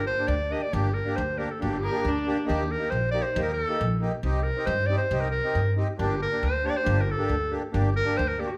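A clear, classical-style clarinet leads this soulful, festive klezmer excerpt in G minor at 137 BPM in 2/4, carrying the solo melody up front over a woody, thumpy pizzicato upright bass on gut strings and a reedy, sweet accordion with light tremolo tuning. A rich, nasal bowed violin adds a brief second line with vibrato between 1.8 and 2.5 seconds. The band plays live in one room, bathed in a large studio reverb, as the chords move from Gm to Eb and Cm before returning to Gm.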